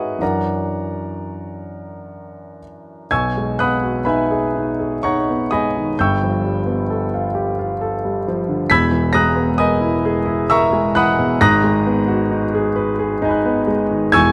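A close, detailed recording with light reverb places a clear concert grand piano up front, its polished, intimate tone carrying deep bass, long sustain and audible action noise. This serene, luminous impressionist solo piano piece in B major moves in a rubato 3/4 at around 62-68 BPM, the piano spanning E1 to B6 across a passage cut from a longer work. Lush harmonies unfold from an opening F#aug7 through B6, G9 and Emaj7#11 before settling on G#m9, with the second section arriving at 3.1 seconds.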